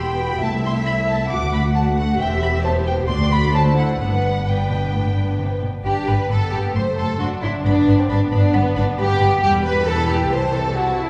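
A straight, quick 4/4 pulse drives this graceful, cheerful classical-period passage for string orchestra, with a smooth-topped violin section singing the melody high above an up-front second violin line, focused violas, soft-attack cellos set in the background and an even, bowed double bass section, all heard from further back in a wet scoring-stage reverb.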